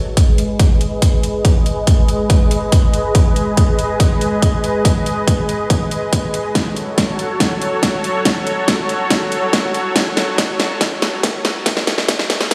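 A half-time pulse at 141 BPM drives this heavy, chaotic wobble dubstep build-up in G# phrygian, where a lush, detuned supersaw pad holds sustained chords from G#m to F#m under a filter sweep and sidechain pumping, a punchy electronic kick and a dubstep kit with a huge snare and metallic hats enter at 0.2 seconds and break into a drum fill at 6.6 seconds, all set in a hall reverb and a stone-room reverb as if played on a big sound system in a bare room, in a short cut from a longer piece.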